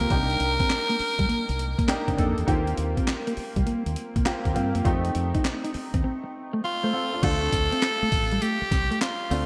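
Bouncy and confident, this new jack swing R&B excerpt at 101 BPM swings its 16ths under a raspy, forceful tenor saxophone melody that plays from 0.0 to 2.2 seconds and returns at 6.6 seconds, over a clear grand piano with audible action noise and analog chorus, a slightly broken-up electric guitar riff with subtle chorus, a deep, round dub bass, and a gritty, up-front breakbeat sampler-style kit of thumpy kick, high-tuned snare, hi-hat, handclaps, tambourine and crash with gated reverb, all moving through Cm9, Eb69 and F9 to a break at 6.0 seconds before landing on Dm7, in a bright 1980s-style digital mix with lush hall reverb.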